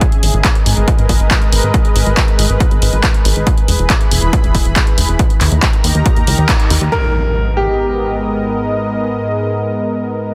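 Uplifting trance at 139 BPM in G# harmonic minor, driving and emotional, cut from a longer piece. A lush, detuned unison pad holds sustained chords through the whole clip with chorus and sidechain pumping, moving from G#madd9 through E and D# before returning to G#madd9 at 6.9 seconds. Up front, a layered, punchy electronic kick with a tape-warm edge sits alongside an analog drum machine supplying handclaps and pumping hi-hats, while a plucky, funky analog bass with a fast attack and mellow decay pumps along in the low register. After a band accent at 6.5 seconds, the drums and bass drop out and an electronic impact hits at 6.9 seconds. At the same moment, a clear, smooth vintage grand piano sounds a brief line with long sustain and dub echo over the pad. The sound is dense and heavily limited with light reverb, giving a modern finish.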